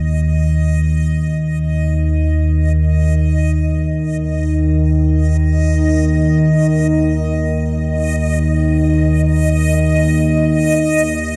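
Unsettling and dark, this dark ambient drone drifts in free time across a short passage cut from a longer piece. Up front sits an analog synth drone spanning Eb2 to Eb3, built from sawtooth and pulse waves with pulse-width modulation and a chorus effect, giving it an evolving, warm body with a slow attack and long release. A filter sweep shapes the drone across its full length. Above it, a reversed, detuned triangle-wave texture on Eb5 fades in from 0.0 seconds to 11.4 seconds, its granular, bright shimmer bathed in its own reverb for a dreamy, swelling quality at a much lower level. The whole passage sits in a vast, echoing space, with a huge ambient reverb lingering for several seconds.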